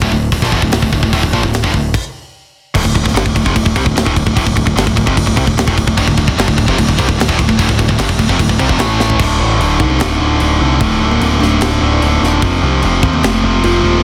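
A bright, high-gain distorted guitar drives this epic, relentless heavy metal excerpt in D minor at 149 BPM, riffing over a growling, overdriven picked bass and a tight acoustic drum kit with a medium-tuned, softly clipped snare, while a scooped second guitar sits in the background in short bursts. After an early stop and a drum fill at 9.0 seconds, the band drops into half time, and at 9.8 seconds a woody, ringing kalimba with tape echo enters with a melody. The dense, heavily limited modern master carries light reverb.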